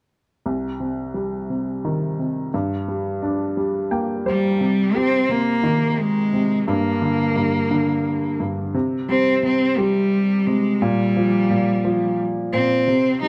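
This melancholic pop piece, cut from a longer work, moves at a slow 58 BPM in a straight 6/8 in C minor, tuned slightly below standard pitch. A woody, slightly detuned upright piano opens at 0.5 seconds, sitting up front and carrying the accompaniment across a broad register while the harmony moves between C minor and G minor. The piano plays a short fill at 3.6 seconds, just before a single bowed cello takes up the melody at 4.3 seconds. The cello's tone is rich and smooth, with vibrato and an even delivery, and it sits a touch louder than the piano. In the second half the chords shift to open C and B-flat power chords, deepening the aching mood. A moderate echo-chamber reverb lends the whole a roomy, reflective sheen.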